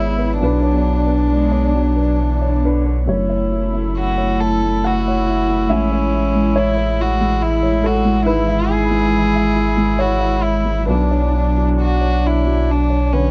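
A tender, intimate neoclassical passage in an unevenly pulsed, rubato three-four opens with a rich, floating sul tasto violin melody up front, a clear, nasal cello second line in the background, a dark, distant viola with vibrato, a woody upright piano and a deep, clean sine sub bass, joined at 0.1 s by a very quiet, ethereal pad with chorus and phaser, the ensemble moving through Bmadd9, F#m7, Amaj7 and E/G# back to Bmadd9 in light reverb.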